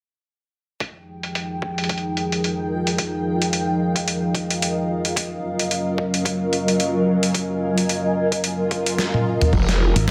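A dark, wave-folded analog pad holds moody sustained chords up front with sidechain pumping in this gritty, swaggering glitch hop excerpt, over a pitched-down, compressed boom bap sampler kit whose filtered drums sweep into a fill around 9.0 s as the thumpy electronic kick drops out, while a blurred granular cloud pad drifts in at 2.3 s, an electronic swell sits in the background, and a growling, detuned bass and a bright, punchy fingered electric bass arrive only at the very end.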